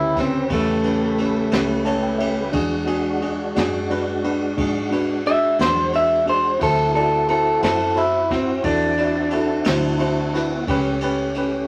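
A gritty, laid-back slow blues in 12/8 opens at once with a clean electric guitar solo through a small old amp, dark, slightly broken-up and compressed, sitting up front in the mix. Underneath, a worn upright piano with audible action noise and a woody, slightly detuned tone supplies accompaniment, stepping forward with a brief fill at 1.5 seconds. A tonewheel organ holds sustained chords in the background, lightly overdriven with chorus vibrato, key click and a slow rotary speaker. A foam-muted fingered electric bass gives a round, amped low end, while a jazz kit played with brushes enters at 0.2 seconds, with a boomy kick, high-tuned snare and dark cymbals in a small room. At 59 BPM, the harmony moves from A9 to E9 to D9 and back to A9, all under light reverb and a layer of vinyl crackle that lends this excerpt a lo-fi, vintage grain.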